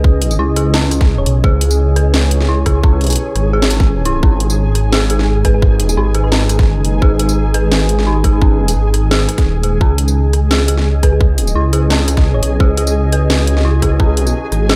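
A dry, gritty hardware sound carries this dark, cinematic half-time drum and bass cut at 172 BPM. An overdriven, tight kick sits up front beside a rumbling, beating detuned saw bass with tube saturation, while a drum kit adds a cracking snare, bright hats, rim clicks and tambourine. Above them, a moody pad with 12-bit sampler grit and sidechain pumping sustains C#madd9 and G#m chords, an eerie, inharmonic FM bell spins arpeggios through tape echo, and a faint flickering granular texture hovers in the background. A round, tine-like thumb-piano-style pluck surfaces briefly around 1.2, 5.5 and 11.0 seconds.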